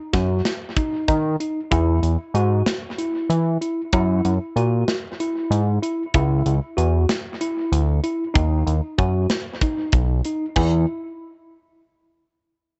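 Set in a straight 7/8 at 190 BPM counted in eighths, this bright, driving progressive instrumental excerpt, tuned to A4 = 441 Hz, pairs a fat, saturated, detuned analog bass with a tight metal drum kit whose up-front kick, snare, hi-hat and crash carry tape echo, while a clean tine electric piano through a combo amp plays tremolo-laden, tape-echoed arpeggios over D#m, Eadd9, F#add9 and C#m in an echo-heavy studio reverb mix capped at 8.0 kHz, until the drums stop at 10.7 s and the bass and piano by 10.9 s.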